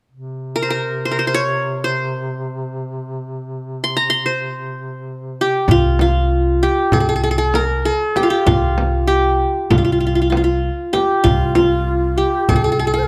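Passionate and warm, this Turkish makam ensemble piece in C hicaz moves in 9/8 at 194 BPM in eighths, tuned to A4 = 437 Hz, and opens with a mellow, folk-style duduk holding a low C drone with vibrato while an up-front qanun, played with fingerpicks on triple strings, carries a bright-edged melody. At 5.7 seconds a woody pizzicato upright bass enters, along with a close, dry clay darbuka played very quietly with soft hands and a deep frame drum sitting in the background, and the duduk drone ends at 5.8 seconds. From 11.2 seconds a breathy, end-blown ney adds a straight-toned second line with a crisp attack, captured with close, detailed microphones and light reverb.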